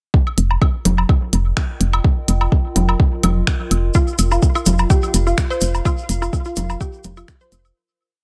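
Minimal techno at 126 BPM with a light 16th-note swing and a quirky, clinical mood, built on a soft, up-front four-on-the-floor kick, an off-beat woody FM bass pumping on F1, clicky programmed hats and finger snaps, and overdriven woodblock and congas clicking in cross rhythm, while a warbling, lo-fi pad of slowly shifting chords fades in behind, a grainy hand-played cabasa joins at 3.9 s, a squelchy, resonant blip pluck repeats a 16-step sequence from 4.0 s, and the echo-heavy mix fades out from 5.2 s.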